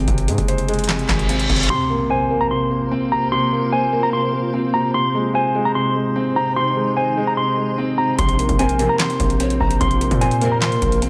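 A half-time trap groove from a booming analog drum machine, with a deep kick, crisp snare, metallic hats and handclaps that sound re-recorded in a small room, drives this hard-hitting, brooding hip hop excerpt, while a distorted, saturated 808-style bass hits heavy and aggressive beneath it. A dark, vintage grand piano plays filtered accompaniment throughout, and a reverse cymbal rises into an electronic impact just as the beat drops out at 1.7 seconds. From there a clean, fingered electric guitar carries the melody up front, softened by a low-pass filter and colored by vibrato, and at 2.5 seconds a cloudy granular pad with slow attack and long release enters to blur sustained chords behind it. The drums and bass crash back in at 8.2 seconds, joined shortly after by a breathy bamboo pan flute line with delay and lush, distant symphonic string stabs in the background. Light reverb and digital ambience wrap the whole, with the chords moving between Ab and Bbsus2.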